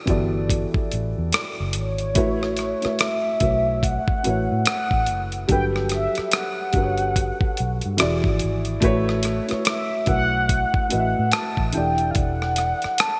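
A bright, 1980s-style digital production sits in a lush hall reverb, framing this short cut from a longer relaxed, sensual R&B and neo-soul piece in A mixolydian at 72 BPM, with a 16th-note swing feel in 4/4. A dark upright piano carries the accompaniment up front, its woody, slightly detuned tone carrying audible, intimate action noise as it moves through Em11, A69, Gmaj7 and E7. From 0.1 seconds a dusty, sampler-style drum kit adds gritty, compressed hi-hat, rim click and a thumpy kick under gated reverb, joined by a vintage foam-muted fingered electric bass with a round, punchy, amped sound. At 1.8 seconds a mellow, horn-like synth lead enters with the melody, blending sawtooth and sine in a wave-folded tone with a filter sweep, soft attack, sustained notes, vibrato and chorus. The bass drops out at 12.9 seconds, while the piano, drums and lead continue to the end of the cut.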